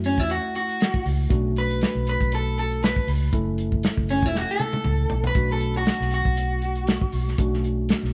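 A stone room's moderate reverb frames this brooding, smoky soul blues excerpt, cut from a longer piece, with the band captured playing live together at 118 BPM in 4/4, its straight-eighth groove lightly swung on the sixteenths and moving between F#m7 and Bm7. Up front, a dark, slightly broken-up picked electric guitar carries the melody from 0.1 s, while a muffled, lo-fi drum kit with a tight kick and rolled-off top adds a fill at 4.3 s, and a round, foam-muted fingered electric bass sits beside it. Underneath, a worn, slightly out-of-tune tine electric piano supplies clean, direct accompaniment.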